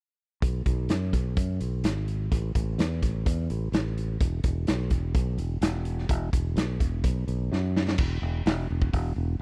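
A raw garage drum kit sits up front in this heavy, brooding blues rock power trio excerpt with a southern rock edge. It has a gritty, saturated character, a punchy kick, a medium-tuned snare, crash and hi-hat, and a stone-room ambience with a rolled-off top. A fingered electric bass growls alongside it in the low register, direct and just as close in the mix. The groove moves at 127 BPM in a straight 4/4, and a drum fill at 7.5 seconds leads into a new section. The drums stop at 9.0 seconds, and the bass carries on alone until 9.4 seconds in a dry, close, 1970s-style studio sound with little reverb.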